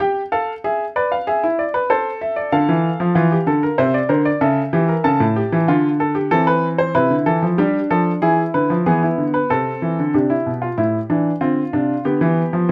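A clear, intimate grand piano sits up front in close, detailed microphones, its natural tone touched by light reverb and audible action noise. This short cut from a longer piece is a classical, baroque-style three-part fugue for solo piano, moving at 95 BPM in 3/4 with a straight feel and tuned to A4 = 442 Hz. The mood is solemn yet driving, with the piano ranging from A2 to A5 across the 12.7 seconds. The harmony passes through chords such as E7/G#, Dm, A7/C# and G5 before the opening part closes at 10.1 seconds. A brief closing section then moves from Am through Dm7 to G/D as the recording breaks off.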